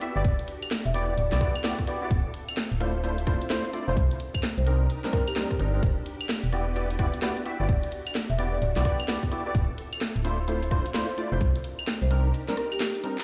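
Late-night and moody, this excerpt of swung two-step UK garage moves at 129 BPM over Em9, Dm9 and Cm9 chords, with a silky, warbling string machine under sidechain pumping in the background beneath hollow organ stabs carrying chorus and dub echo. A woody marimba with soft mallets plays a round melody from 0.2 s, trailed by dub echo, while a dark, up-front FM bass pumps alongside a tight electronic kick and a layered garage kit of claves, handclaps, warm hi-hats, rim clicks and a cracking snare. A break arrives at 12.3 s and closes with a drum fill at 12.8 s, the whole mix sitting in a large studio reverb as if played on a big sound system in a bare room.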